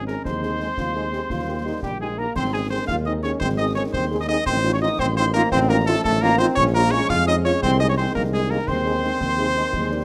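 Captured with close, detailed microphones in a large studio with a moderate 1.1-second reverb, this rousing, proud military-style march for wind band moves at 114 BPM in 6/8 in Ab major, cut from a longer piece. A clear cornet carries the melody up front with light vibrato over an equally forward, mellow tuba bass, while a pure, woody piccolo in the background and a soft-attacked euphonium solo, entering at 0.3 seconds, add second lines. A tight French horn section accompanies in the background, a very quiet dark trombone section holds sustained chords, and very quiet snare, bass drum and clash cymbals add bright cymbals, with the harmony passing through F7/A and Bbm7 after a new section begins at 2.4 seconds.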